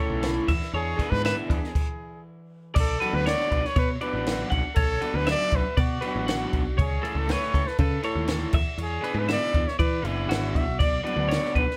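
A playful, intricate math rock and midwest emo passage, cut from a longer piece, opens with a close-miked trumpet carrying the melody over warm twelve-string electric guitar arpeggios tucked in the background, a second, bright and twangy twelve-string that drops out at 3.8 seconds, and a double-tracked, overdriven garage guitar riff. A round, punchy picked electric bass and a dry, compact cocktail drum kit with dark cymbals and a high-tuned snare join almost at once, and after a stop at 1.7 seconds the band moves from its E7 opening into a section built on Bm7, A/C# and E7. The live small-room sound keeps the drums and the lightly vibrato-tinged trumpet up front.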